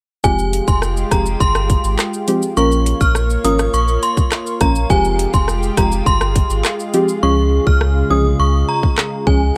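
A dry, gritty hardware sound with little reverb frames this tough, hypnotic dancehall cut, taken from a longer piece and moving at 103 BPM in a straight 4/4 in F minor. An electronic island pop drum kit sits up front, pairing a tight kick with metallic hi-hats, handclaps, rim clicks and shaker. Beneath it, a round, sine-like sub bass with tube saturation holds the low end, while a dark, nasal chord stab with a filtered pluck and chorus carries the accompaniment through Fmadd9, Bbm and back, landing on Db at 7.2 s. A lush, warbling unison pad of detuned sawtooth and square waves sustains the chords with chorus and sidechain pumping, and an inharmonic FM chime rings out the melody high above through ensemble chorus and analog delay. At 7.2 s the hi-hats drop away, thinning the groove as the pad rings on to 9.6 s.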